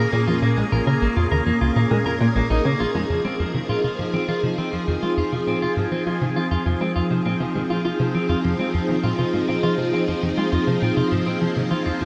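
Ambient, sequencer-driven space music at 101 BPM in a straight 4/4, hypnotic and mysterious, this short cut from a longer piece sits in Bb minor before moving to F minor at 3.1 seconds, its harmony shifting from Bbm7 to Fm7. A phased string machine holds sustained chords up front, its vintage sawtooth tone swirling and warbling through ensemble chorus and a moving notch. A clean electric guitar, dark and picked, plays arpeggios through analog delay, also placed up front. Beneath them a plucky analog bass carries a punchy, funky riff with a fast attack and decaying filter pluck, treated with ensemble chorus and delay, while a filter sweep on the bass marks both the opening and the passage from 3.1 seconds. From that point a pulsing, tempo-synced gated texture of detuned triangle tones enters, barely audible, and the whole mix floats in a huge, wet ambient reverb with a 7.7-second decay.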